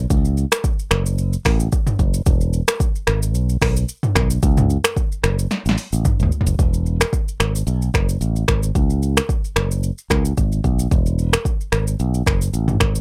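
A bright, punchy fingered electric bass sits up front from the first moment in this breezy, romantic afrobeats excerpt, moving at 111 BPM in E major with a gentle 16th-note swing. Joining at 0.1 seconds, an electronic, layered drum kit with a deep kick and overdriven grit mixes finger snaps, hi-hat, rim click, shaker, snare and toms, and a drum fill from 5.5 to 6.6 seconds leads into the second section. The sound is dry and close, with little reverb, the kit carrying the character of being re-recorded in a small room.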